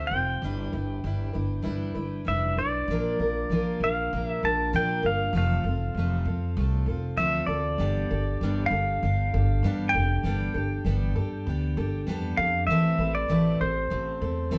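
Recorded live by a band in one room, this 14.6-second fragment of a longer piece carries a moderate stone-room reverb around a close, up-front trio. It is a warm, open-road folk rock and heartland rock tune at 98 BPM in a straight 4/4, moving through chords such as G6, Bb, F, Gadd9 and a closing Amadd9 at 12.7 seconds. A clean, twangy pedal steel guitar, played with fingerpicks and slide, carries the compressed melody with volume swells over a full-bodied jumbo acoustic guitar, picked on fresh strings, and a woody pizzicato upright bass.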